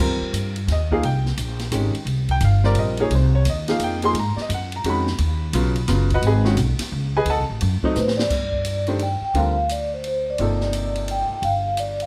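A clear upright piano, a growly pizzicato upright bass and an open jazz kit with dark cymbals and a boomy kick start this hypnotic, cool modal jazz excerpt in a swung 3/4 at 173 BPM, moving through extended chords that include a rootless D7b9 before a drum fill at 8.0 seconds lands the music in G minor, just after a mellow soft-mallet vibraphone with medium motor vibrato enters on the melody at 7.9 seconds, all captured closely in a small room with light reverb.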